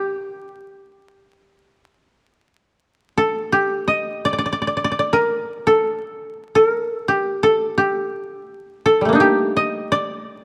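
A solo koto opens this brief, austere fragment of Japanese chamber music, its mellow, woody tone sitting up front and sounding dry and acoustic as it is plucked with fingerpicks. The mood is meditative, and although a tempo of 84 BPM in 4/4 underlies it, the playing moves freely in rubato. The line stays within a G hirajoshi scale, ranging from G3 to Eb5. A first short passage gives way to a new section at 3.1 seconds, which carries on until the cut at 10.4 seconds. A moderate plate reverb lends the recording a lingering tail, and a vinyl crackle adds an aged surface to the sound.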